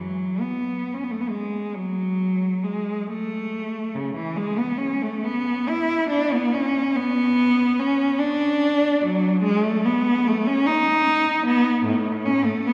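A single bowed cello opens alone, rich and focused with a smooth top and vibrato, carrying a lonely, yearning classical line spanning A2 to E4 in a free, rubato 6/8 at roughly 43-51 BPM in dotted quarters. Placed up front yet bathed in a wet church reverb with a 3.4-second tail, the unaccompanied instrument sounds expressive and solitary across this 12.7-second excerpt of a longer piece.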